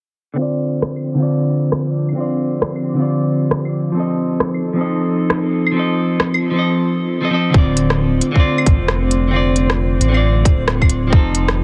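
A clean, picked electric guitar accompanies this melancholic, ghostly future garage piece, its sampler grit, analog delay and filter sweep pumping against a swung beat of claves, crisp hats and rim clicks, while a warbling, detuned tape-like pad hovers darkly in the background over Dm7 and F7 chords. At 7.5 seconds a tight, tape-warm kick and a round sine sub bass arrive up front, and from 8.2 seconds a faint reversed granular texture swells dreamily in the mix. The whole passage carries a compressed, radio-like cassette haze with light reverb.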